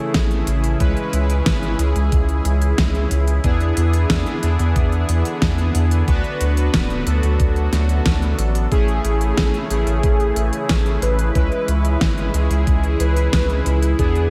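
A lightly reverberant, cut-down slice of dreamy, uplifting synthwave at 91 BPM in a straight 4/4, where a swirling, detuned sawtooth pad with phaser, chorus and sidechain pumping holds sustained chords under brassy, fat synth-brass stabs dressed in chorus and tape echo, while a round, deep analog bass sits up front beneath a knocking, tape-warm electronic kick and a layered pop kit of fat snare and crisp hats wrapped in gated reverb, until a thick unison sawtooth lead with vibrato enters at 8.7 seconds to carry the melody over chords moving from Amaj7 through C#m, E7 and D6.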